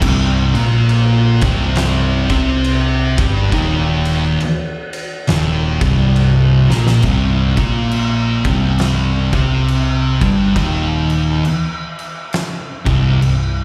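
Stoner and doom metal with a sludgy, hypnotic swing, cut from a longer piece, where two thick, dark fuzz guitars play up-front distorted riffs with a slapback echo over a round, overdriven hollow-body short-scale bass. An oversized, low-tuned acoustic drum kit brings a boomy kick, fat snare and dark crash and ride cymbals, its gritty, saturated sound pumping in a big room, and a drum fill at 6.6 seconds leads into a new section at 7.0 seconds. The whole performance has the feel of a live gig heard through the venue's PA, with small-room ambience and recital-hall reverb.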